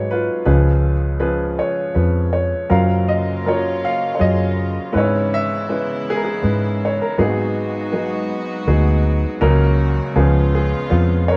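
Acoustic folk-pop ballad in F# major at 80 BPM in a straight 3/4, nostalgic and intimate, where a clear, woody upright piano carries the melody up front over a dark, round, foam-muted electric bass, joined at 2.7 seconds by a distant, floating string section holding soft sustained chords through a progression from C#7 to F#maj7 and back to C#7, all heard as a band playing live in one room with moderate reverb in this short cut from a longer piece.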